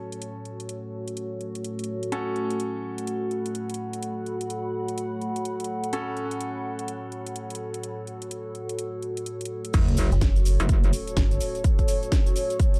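A dark analog pad holds sustained F# minor chords with a deep, moody sawtooth tone shaded by chorus and phaser, while a warbling, nostalgic tape-like pad adds a lo-fi texture and clear, boxy grand piano stabs pump through a low-pass filter and delay. This bass house cut from a longer piece runs at 126 BPM in 4/4 with a 61% swing on the sixteenths, and a house drum kit of cracking snare, metallic hats and crash cymbal sits beneath from 0.1 seconds. At 9.7 seconds the piano stops and the drop hits: an overdriven, punchy electronic kick drum pushes to the front, a very quiet sub drop marks the impact, and a grainy cabasa ticks in the background. A wobbling, saturated wobble bass on F#1 and a digital FM bass reaching G1 bring a metallic, aggressive bite, both pumping against the kick. The dark production, with light reverb and a digital ambience, gives the whole piece a bouncy yet aggressive mood.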